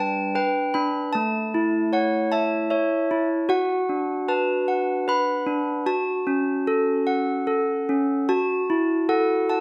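In a straight 3/4 at 76 BPM, this innocent, gentle children's lullaby excerpt features solo handbells, clear and ringing with hard clappers, heard up front from G3 to B5 over a moderate recital hall reverb as the harmony drifts from G through A, Bm and A6 to F#m7 at 8.3 seconds.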